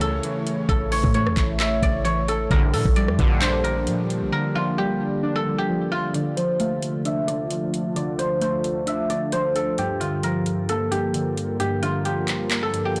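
This eerie, melancholic trap-flavored hip hop piece, cut from a longer track, moves at 132 BPM with a half-time feel in D minor. Up front, a silvery, fingerpicked guzheng carries the ringing melody through a low-pass filter and tape echo, over warbling, detuned lo-fi synth keys whose nostalgic chorus-soaked chords keep evolving. Beneath them a deep, dark ambient pad sits in the background with slow-attack, sustained sawtooth and sub-octave layers bathed in chorus and reverb. A juicy, resonant sweep polysynth adds brief stabs, while a clean, boomy sine 808 bass anchors the opening until 4.3 seconds, when the knocking kick, metallic hats, handclaps and rim clicks of the electronic drum kit also drop out. The kit returns at 6.1 seconds as a filter sweep begins with the second section and the harmony shifts through Dm7 and Gm7. The whole mix has a blown-out, overdriven character with light digital ambience.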